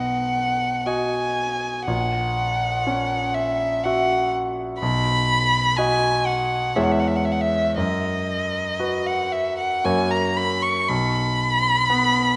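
A dark, woody violin sings a serene, tender melody with vibrato, joined from the first moment by a brilliant concert grand piano whose accompaniment reaches down into deep bass. This romantic classical duo moves in an unhurried 3/4 at around 56-62 BPM with a flexible rubato feel in B major, touching a C#m/E colour before settling on F# and stopping at 12.4 seconds. Both instruments sit up front in a concert hall with moderate reverb, the piano keeping a natural tone throughout this short excerpt from a longer piece.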